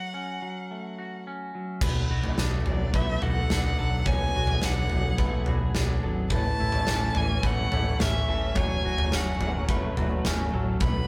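A big, punchy rock drum kit sits up front in this melancholic, cathartic post-rock excerpt, with bright cymbals, a medium-tuned snare, toms and kick arriving at 1.8 seconds to sound in a large room. Over it, a solo bowed violin carries the melody from the opening, singing expressively with vibrato, portamento and a smooth top. A clean, twangy, fingered electric guitar plays arpeggios from the start, and at 1.8 seconds a growling, overdriven fingered bass joins alongside a bright, compressed twelve-string electric guitar whose picked arpeggios shimmer in the background through spring reverb. Also entering at 1.8 seconds, a dark, veiled string section, muted con sordino, sits beneath everything, holding sustained chords that move from Bm7 through A to F#m. The whole band plays live together in one room, with a moderate studio reverb that binds the parts into a single mood.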